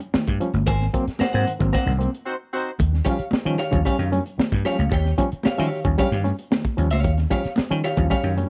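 Funky and playful, this short funk excerpt is cut from a longer piece and rides a crunchy breakbeat kit with a high-tuned snare and tight kick, an up-front growly slap bass, and very quiet congas with soft hands under a dry, close 1970s-style studio sound. A barky, lightly overdriven reed electric piano with tremolo punches out stabs while a clean, picked electric guitar with subtle chorus adds accompaniment. The band hits an accent from 0.7 seconds, capped by a brief, mellow horn section line doubled in octaves at 2.3 seconds.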